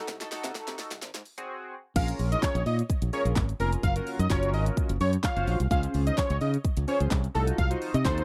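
Dance-pop at 128 BPM in Bb minor, confident and bittersweet, this dry, close, 1970s-style cut opens on a two-second build-up with a drum fill and filter sweep over a glossy, phased, chorused polysynth that pumps with the sidechain, then drops at 2.0 s as a thick, warbling, nasal unison lead with tape echo takes the melody above a bright, up-front fingered electric bass that also pumps and punchy, layered pop drums with a fat snare, handclaps, shaker, hi-hat and crash.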